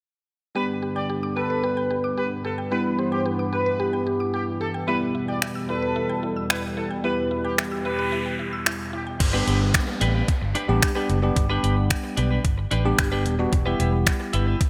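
An upbeat, euphoric dance-pop excerpt at 111 BPM in G major opens at 0.5 seconds with a bell-like tine electric piano laying down an accompaniment that pumps against the beat. It is joined almost at once by a distant, roomy horn section carrying the melody with light vibrato, a shimmering pulse-width pad holding sustained chords, and a woody FM pluck rippling through arpeggios with delay. A velvety, detuned synth lead adds a second melodic line from 1.4 seconds as the harmony moves between G and Em. A crisp 8-bit drum machine with a thumpy kick, finger snaps, hi-hat and crash cymbal arrives at 5.4 seconds, sitting up front, and a noise sweep builds toward the next section. Around 9 seconds the horns, pad and pluck fall away, and a twangy, compressed twelve-string electric guitar riff takes over alongside a dark, foam-muted fingered bass that sounds round and punchy. The whole excerpt has a bright 1980s-style digital sheen bathed in a lush hall reverb.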